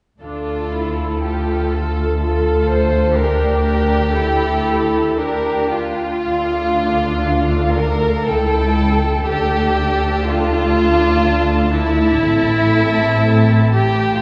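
Up front, a muted violin section carries a soft-edged second line with a smooth top beneath a more distant, veiled violin melody, in this slow, melancholic classical movement for string orchestra cut from a longer piece. Violas add light-vibrato accompaniment while cellos and double basses anchor the bass in a dark, bowed, con sordino tone, every section playing from 0.2 to 14.2 seconds in a rubato triple metre. Heard from further back in a reverberant concert hall, the elegiac music moves from an opening over Dm and Gm/D into a second section at 6.3 seconds that passes through A7/C# and settles on Am.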